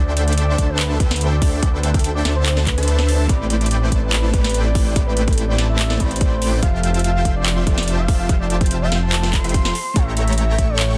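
Future bass in A minor at 144 BPM with a half-time feel, this dreamy, lush clip from a longer piece opens with a soft, round octave-layered synth lead carrying the melody through chorus and tape echo over a huge, airy supersaw riff and a thick, detuned saw bass, all three breathing with sidechain pumping. A hard-clipped electronic kick sits up front alongside a trap kit of sharp snare, metallic hats and handclaps, the kick dropping out briefly from 2.9 to 3.3 s, just before a slightly broken-up picked electric guitar enters in the background at 3.3 s. The chords move from D9sus4 through Am11 and Fmaj9 to A7b9, and the dense, heavily limited master keeps the sound close and dry with little reverb.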